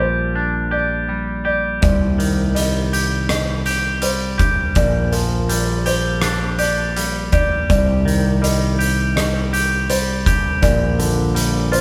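Recorded as a band playing live in one room with moderate studio reverb, this brooding, melancholic post-rock excerpt at 82 BPM in C minor puts a twangy, clean electric guitar's arpeggios with analog delay up front beside a growling, overdriven picked bass, while a felt-muted upright piano murmurs mellow arpeggios with audible action noise in the background, and an oversized low-tuned drum kit, gritty and pumping in a bright stone room with a punchy kick, hi-hat and rim click, joins at 1.8 s as the chords move between Gm7/Bb and Cmadd9.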